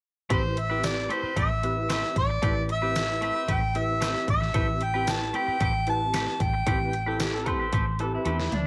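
Mournful and brooding, this straight-eighth soul blues in A minor moves at 113 BPM, with a mellow, up-front harmonica carrying the melody in a distant, roomy jazz style with light vibrato and scooped notes until 7.2 seconds. Beneath it, a clean tine electric piano with ensemble chorus holds an Am9 accompaniment, a bright, twangy clean electric guitar adds compressed picked stabs, and a dark, round, foam-muted fingered bass anchors the low end. A punchy, layered electronic dubstep kit with a deep snare, tambourine and toms drives the groove and closes with a fill at 8.3 seconds, while a slightly broken-up, lo-fi guitar through a small old amp takes over a second line as the harmonica drops out, all set in light reverb and digital ambience.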